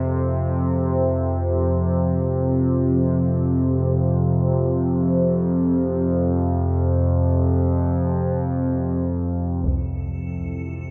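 An up-front analog drone of detuned sawtooth and pulse waves, treated with chorus and phaser, holds the low register from F2 to C3 through this unsettling, dark ambient piece in free time and F major, evolving in a cavernous cathedral reverb. At 9.6 seconds a muffled, low-passed taiko ensemble strikes briefly with hard sticks, as an icy, crystalline glass pad drifts in on a shimmer reverb. A deep, moody pad with a sub octave joins very quietly at 10.4 seconds, shortly before the cut.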